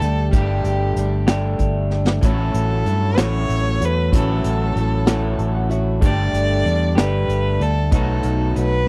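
A rich, focused fiddle with light vibrato and a slapback echo carries the melody in this short, nostalgic excerpt of folk rock and heartland rock, moving at a slow 63 BPM in a straight 6/8 in A mixolydian over Gsus2, A6 and B7 chords. A boxy, parlour-sized steel-string acoustic guitar with audible finger squeak and a slightly broken-up electric guitar riff through a small old amp fill out the middle. A round, amped fingered bass and a punchy, airy kit played with bundle sticks sit up front, the drums adding a fill just before a woody, very quiet upright piano enters at 2.2 seconds and takes its own fill at 5.1 seconds, all captured in a dry, close 1970s-style studio sound.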